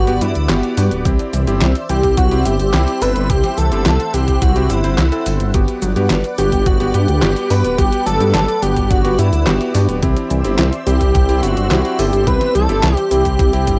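Romantic and nostalgic, this synthwave excerpt in straight 4/4 sets a thick, warbling unison lead carrying the melody through analog delay, shadowed by an airy, dreamy second lead washed in chorus and tape, over silky sustained string-pad chords that pump in the background while a very quiet, punchy unison pluck runs arpeggios. A bright, clangy electric grand piano with vintage sampler grit punctuates with stabs, and a deep, rumbling detuned saw bass sits up front, moving between Gmaj7 and C. A detuned 8-bit drum machine with handclaps, hi-hat, shaker and snare starts at 0.1 seconds, joined by a thumpy electronic kick at 1.1 seconds, all colored by a home cassette recording in a modest booth ambience.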